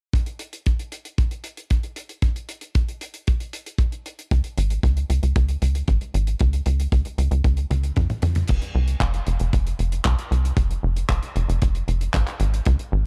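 Melodramatic and danceable, this italo disco excerpt moves at 115 BPM in a straight 4/4 in F minor. A damped 70s drum kit plays from the start, its crash cymbal, handclaps, hi-hat and toms sitting dry and mid-forward in a studio ambience, while an up-front kick drum with a tight, rolled-off top anchors the pulse. At 4.3 seconds a tight sequencer bass enters, a punchy, nasal blend of sawtooth and square wave with a fast-attack filter pluck and tube saturation, driving between F1 and F2. A drum fill at 7.7 seconds leads into a new section at 8.5 seconds. The production is dark and warm, with little reverb, and the piece is cut from a longer whole.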